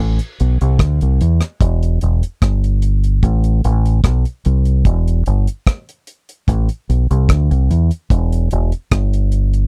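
A close, 1970s-style studio sound with little reverb frames this meditative, laid-back roots reggae passage in A minor at 74 BPM, cut from a longer piece, where a dark, round fingered dub electric bass sits up front from the start, spanning E1 to E2, and an acoustic, dry reggae drum kit joins at 0.2 s with a tight kick, hi-hat and rim click, also placed forward in the mix.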